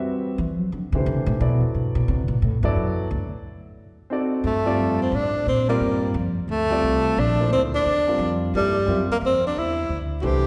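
A swung 3/4 at 176 BPM drives this intense, searching modal jazz excerpt, with a woody, pizzicato upright bass taking a solo from 0.4 s over a warm concert grand piano, as the harmony moves through Am9, Bm7 and D7b9 in A dorian. At 4.5 s the key shifts to G dorian on a Gm9 chord, and a close-miked, mellow tenor saxophone enters with soft attacks and scooped notes, while the harmony arrives on C at 8.5 s. A concert-hall reverb with a 2.1 s tail surrounds the up-front trio.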